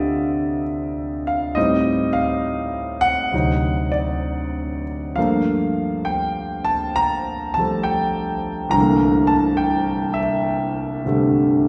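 A lone concert grand piano opens this brief cut from a longer solo jazz piece, sitting up front and intimate with a natural, warm tone, deep bass and long sustain. The mood is playful yet sophisticated, moving at a relaxed 64-71 BPM in 4/4 with a swung eighth-note feel that bends freely in rubato. The harmony drifts through Dm7, Am7b5 and D7b9 before settling onto Gm9 and finally C13 at 8.8 seconds, with the playing ranging from C2 up to Bb5. The clatter of the instrument's action stays audible close in, while a wet recital hall reverb with a 1.4-second tail lends the sound a church or concert hall bloom. The piano plays alone from start to finish, ending at 11.7 seconds.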